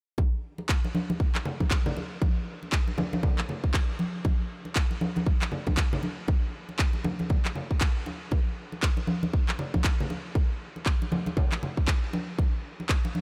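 Afro house with a driving, warm mood and a swung sixteenth-note groove in 4/4, heard as a short cut from a longer piece. A punchy, layered electronic kick sits up front alongside ringing acoustic congas with a small-room character, while overdriven electronic handclaps join at 0.7 seconds. Light reverb and studio ambience frame the percussion-only texture.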